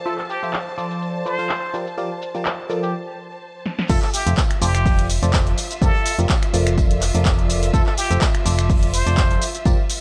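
Joyful and uplifting, this piano house excerpt at 125 BPM in F major opens with a barking, biting FM electric piano riff under a filter sweep, with phaser and cassette-tape warble, alongside a forceful plunger-muted trumpet melody with wah-wah vibrato and tape echo, lush bowed violin chords pumping against the sidechain, and a punchy analog drum machine of snaps, claps, shaker and filtered hats. After a break from 2.9 s and a drum fill, the drop at 3.9 s brings in an up-front electronic kick, a round, dark FM bass and a very quiet, gritty low-tuned acoustic kit with tambourine. The Fmaj7, Dm7/F, Gm7/F and Bbmaj7/F cycle floats in light small-room reverb.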